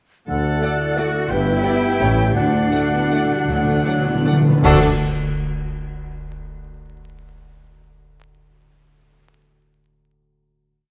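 A clear violin section carries the melody of this short, festive orchestral ballroom waltz, bowed with vibrato in the background, while a very quiet, distant second violin section adds rich sustained harmony. A lush viola section fills in intense after-beat chords and answers at phrase ends, and a focused cello section also plays melody above the bass. The low end comes from a smooth double bass section on the beats, a roomy tuba doubling the bass line, and round soft-mallet timpani that roll into louder passages. A hollow, airy flute with crisp attack traces a counter-melody, joined in sustained chords by a mellow clarinet, a soft-attacked cor anglais and a tight, present French horn section, while a ringing harp rocks through broken chords. The elegant, rubato phrase begins slowing around 1.8 s, bright cymbal swells, crashes and bass drum strokes arrive at 2.4 s, and a band accent marks the final chord, where the harp rings on until 5.7 s, with a wet scoring-stage reverb and vinyl crackle over the recording.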